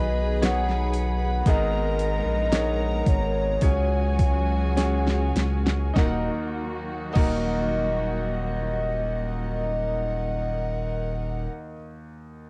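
A knocking, tape-tinged electronic R&B kit sits up front in this longing, melancholic pop ballad excerpt in Eb minor, easing through a slowing 50-59 BPM in 4/4 with a fill from 4.8 to 6.0 seconds before the drums drop out at 7.5 seconds. Above a deep, saturated sine sub bass, a hollow, woody clarinet-like synth lead carries the melody with chorus, phaser and vibrato. An earthy violin section adds a second line, a clear, intimate grand piano with audible action noise and plate reverb accompanies, and veiled, muted strings hold chords in the background, all with a cassette home-recording character as the chords move from B through Abmadd9 and Dbsus4 to Ebm.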